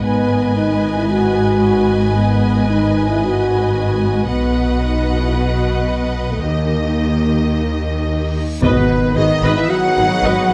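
A straight 4/4 pulse at 112 BPM drives this dark, epic cinematic cue in G# minor, cut from a longer piece. Rich studio violins carry the melody over a lush second line from symphonic violins and a distant, focused viola accompaniment, while mellow French horns hold sustained chords above cellos in the background and clear double basses up front. The harmony moves from G#m7 through B and D# before returning to G#m7. A huge reverse cymbal at 8.5 seconds leads into an impact at 8.6 seconds, where further layers arrive: bright trumpet stabs in the background, tight, very quiet trombone chords, a solo tuba on a low G#, a pure, soft-attack flute second line, a barely audible string section sustaining chords, and round timpani on soft mallets until 9.4 seconds. A moderate scoring stage reverb gives the orchestra spacious depth.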